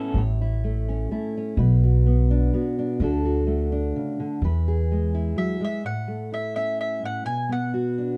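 A dark, close small-room sound frames this short, peaceful folk fragment in 3/4 at 127 BPM in A major. A fingerpicked steel-string acoustic guitar carries the accompaniment throughout, with a woody pizzicato upright bass beneath it until 5.3 s, as the chords move through A, Bm, D and E. At 5.4 s a mellow, round mandolin with doubled strings takes up the melody as the harmony returns to A and then Bm.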